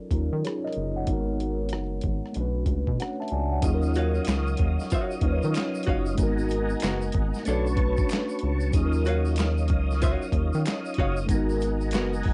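R&B and neo-soul in Eb minor at 94 BPM, this introspective, late-night passage, cut from a longer piece, moves in 4/4 with a lazy swing on the sixteenths. A mellow tine electric piano carries the Ebm9, Abm9 and Bm9 chords up front, colored by phaser and cassette tape, while a rubbery, bouncy square bass with a dark, wave-folded filter pluck and tube saturation sits close beside it. The dusty, sampler-style drum kit is gritty and overdriven, with a thumpy kick, medium-tuned snare, rim click, hi-hat and handclaps. At 3.6 seconds a clear tonewheel organ enters with sustained chords through chorus vibrato and a slow rotary speaker, joined by a distant tube shaker and finger snaps heard in a large room. From 4.0 seconds a dark, picked, hollow-body archtop guitar adds a clean second line, and the whole home cassette recording has little reverb and a soft, rolled-off top end.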